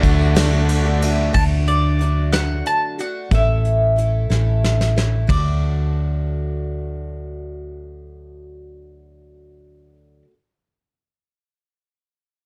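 A dark, warm production with little reverb frames this short cut from a longer folk rock and heartland rock piece, jangly and open-road in mood, moving at a slow 61 BPM in a straight 6/8 in D major. A picked mandolin with round double strings carries the melody throughout, over a shimmering, octave-doubled twelve-string acoustic guitar whose boxy archtop tone fills in the accompaniment. Up front, a round, amped hollow-body short-scale bass anchors the low end, while a soft brush kit in a studio room, with a tight kick and medium-tuned snare, plays until 5.4 seconds after a fill that begins at 4.3 seconds. The opening moment is the busiest: a bright, double-tracked overdriven guitar riff and a smooth tonewheel organ, with key click and slow rotary speaker in the background, sound only until 1.3 seconds, joined briefly by a very quiet, jingly vintage tambourine. The harmony moves from D to A and back to D at 5.3 seconds, where the strings carry on alone toward the end.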